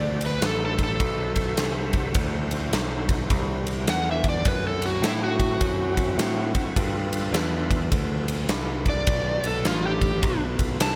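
Blues rock in a power-trio, southern rock vein, this gritty, raunchy swung excerpt features an overdriven slide guitar played with fingerpicks, carrying a solo over D7 that shifts to G7 at 6.8 seconds. A growly, punchy picked electric bass sits up front beside a huge arena drum kit that enters at 0.2 seconds with a punchy kick, medium-tuned snare, bright ride cymbal and a pumping hall sound. Behind them, a thick, overdriven tonewheel organ holds sustained chords through a slow rotary speaker and chorus vibrato, all in light reverb.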